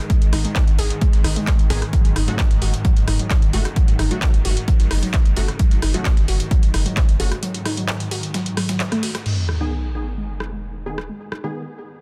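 Driving peak-time techno at 131 BPM in G# phrygian, dark and industrial in mood, cut from a longer piece and moving from G#m to F#m before returning to G#m. A punchy electronic kick sits up front, layered with a techno kit of metallic hats, crash cymbal, handclaps and rim clicks, while a very quiet, gritty breakbeat sampler-style kit adds compressed hi-hat and a medium-tuned snare beneath. A deep, thick saturated sub bass with overdrive and a low-pass filter holds the bottom in the background, and a swarming, granular drone with phaser and slow attack evolves tensely until 9.3 seconds. Over this, a warbling, lo-fi pluck built from square and sawtooth waves with a noise layer drives the riff through tube saturation, lush chorus and digital delay, joined from 1.7 seconds by aggressive, full-bodied unison rave stabs soaked in chorus, reverb and delay. Sidechain pumping moves through the drone, pluck, bass, stabs and the techno kit's hats and cymbals, and after a break with a band accent at 8.8 seconds, an up-front sub drop hits at 9.3 seconds as a filter sweep runs through the closing section. 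The dense, heavily limited modern master sits in a digital ambience.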